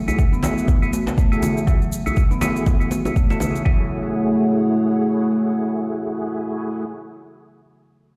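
Heard through a big sound system in a bare room with a lush hall reverb, this driving, spiritual afro house excerpt at 121 BPM in F# minor rests on an F#m9 chord held by a deep, detuned analog pad and punctuated by mellow, round stabs from an up-front tonewheel organ with slow rotary speaker and delay, both pumping with the sidechain, while a deep, layered electronic kick, a produced shaker, ringing close congas, a saturated, soft-handed djembe and filtered, delayed marimba arpeggios carry the swung groove until the kick stops at 3.8 s and the marimba at 3.9 s, after which the pad and organ play on alone until 6.9 s.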